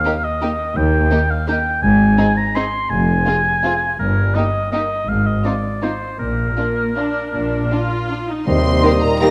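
A dark, warm orchestral sound sits in a moderate scoring-stage reverb as this festive, elegant ballroom waltz in Eb major unfolds at a rubato 3/4 pace of roughly 150-181 BPM, cut from a longer piece. An up-front oboe with a soft attack and vibrato opens at 0.0 s on a second line, joined almost at once by a lush symphonic violin section carrying the melody, a focused chamber violin section beneath it and a close viola section with vibrato filling in the accompaniment. From 0.8 s a smooth, even cello section and a rich chamber double bass section ground the harmony as it moves from Eb through Ab, Fm and Eb/G to a Bb chord. At 8.5 s the cadence lands back on Eb and the colours broaden: a pure, hollow-toned flute and a mellow bassoon sit in the background, a distant French horn section and a tight trombone section add very quiet sustained chords, and timpani struck with hard mallets give a dry, articulate accent. 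A bright, present clarinet slips in at the very end on its own second line as the excerpt closes.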